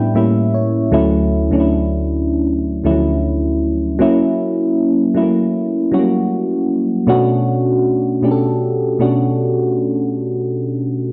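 Longing and sensual, this short R&B excerpt features a solo FM electric piano with a soft, round, dark tone, a noise layer and a chorus sheen, sitting up front in a moderate studio room with a cassette-tape character. It opens with a brief fill in the first 0.9 seconds, then moves through A7b9, Dmaj9 and F#7 over a light sixteenth-note swing, before a new section arrives at 7.1 seconds on Bm7. The piano's notes have a fast attack and then decay, captured in a home recording on cassette.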